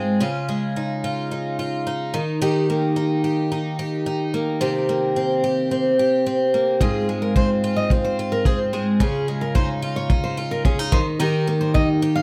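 Close, detailed microphones and light reverb frame this easy-going, carefree acoustic pop fragment at 109 BPM in 4/4, opening with an up-front, shimmering twelve-string acoustic guitar whose octave-doubled picking carries audible finger squeak over chords moving from Dbadd9 to Eb. At 6.8 s a full-bodied steel-string acoustic guitar enters with high picked arpeggios, joined by a tight, muffled kick drum with a gritty, saturated, lo-fi character and a rolled-off top.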